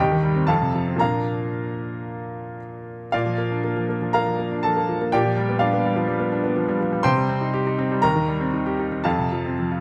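This is a classical virtuoso piano study in B-flat major, sparkling and brilliant in mood, moving at about 111-126 BPM in 4/4 with a free, rubato feel. A solo baby grand piano carries the whole 9.8-second fragment, which is cut from a longer piece, ranging from Eb2 up to C6. Its tone is clear and natural, with long sustain, and it sits up front under close, detailed microphones and a light reverb. The opening phrase runs to 3.1 seconds and then returns, moving through C minor, F and B-flat before touching G7 at 5.1 seconds and settling back through C minor toward F at 9.0 seconds.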